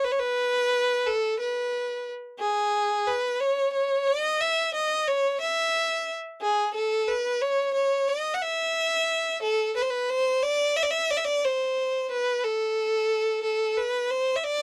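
A lone bowed violin opens this short Arabic fragment in E maqam ajam, its clear, smooth, even tone carrying vibrato as it moves between G#4 and F#5 in a passionate, warm mood. The slow 6/8 pulse sits at 60 beats per minute on the dotted quarter with a straight feel, and the tuning rests at A4 = 439 Hz. Recorded up front in a dry, close 1970s-style studio with little reverb, the single player shifts into a new section at 10.4 seconds before the passage is cut off at 14.6 seconds.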